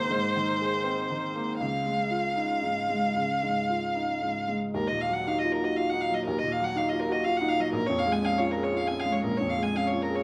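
In a rubato 3/4 at 119 BPM, this fragile, longing neoclassical fragment for piano and strings sits in Eb dorian, moving from Abadd9 and Dbadd9 into Ebmadd9 and Bbm7 as a second passage begins at 4.8 seconds. A single bowed violin carries the melody throughout with a focused, vibrato-rich tone, while a worn, woody upright piano, slightly detuned and boxy with long sustain, plays the accompaniment. Both instruments sit up front, captured live in one room with light reverb.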